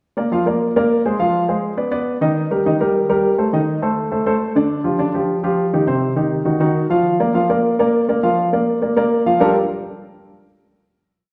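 A baby grand piano opens the piece alone at 0.2 seconds, playing a driving montuno figure in octaves at a brisk 205 BPM in straight 4/4. The instrument sounds warm and natural, placed up front. Its playing spans C3 to F5 in G minor, tuned to A4 = 441 Hz. The harmony moves through sophisticated colours such as a rootless Cm7, Cm69, Dmadd11 and Ebmadd9 before settling on a closing Gm9 at 9.4 seconds. A wet recital-hall reverb with a 1.4-second decay surrounds the piano and gives it the resonance of a church or concert hall, and the piano rings until 9.5 seconds in this short, complete jazz piece.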